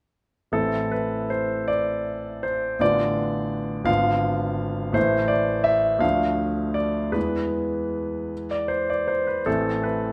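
A clear, intimate grand piano sits up front with its action noise audible as it plays alone from 0.5 to 10.1 s in this passionate, bittersweet romantic character piece in A minor, moving in a rubato 6/8 at roughly 51-57 BPM through shadowed harmonies such as a G#dim7 and an E chord before settling on Am, all bathed in a lush recital hall reverb in a short cut from a longer work.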